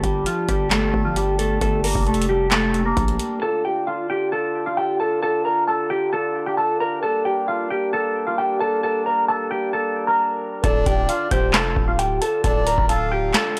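A half-time trap groove from a booming analog drum machine, with its deep kick, crisp snare, metallic hats and handclaps, and a heavy, distorted 808-style bass opens this melancholic, dark hip hop fragment, then both drop away around 3.3 seconds and return at 10.6 seconds. Throughout, a clean, fingered electric guitar carries the melody up front, colored by phaser, low-pass filtering and tape echo, while a distant, roomy brass ensemble holds soft sustained chords beneath it. From 10.6 seconds a breathy, flute-like synth lead with chorus, vibrato and tape echo adds a second line, all set in a dry, gritty hardware recording with transformer saturation and digital ambience.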